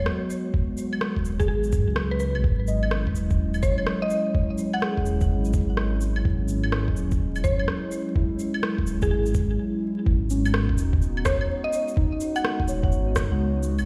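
Vinyl crackle and a large studio reverb, heard as if through a big sound system in a bare room, frame this nocturnal, ghostly future garage cut at 126 BPM in G# minor, swung on the sixteenths and moving from G#m7 to C#madd9 before a short break at 9.6 seconds. A woody, round FM pluck carries the melody through chorus, cassette tape and delay over a warbling, lo-fi pad with 12-bit sampler grit and sidechain pumping, while a deep, rumbling detuned saw bass sits up front and pumps beneath them. A muffled, overdriven thumpy kick and a tape-warm kit of rim click, shaker, claves and cabasa drive the groove, and muted, felt-like synth keys with dub echo join at 2.7 seconds.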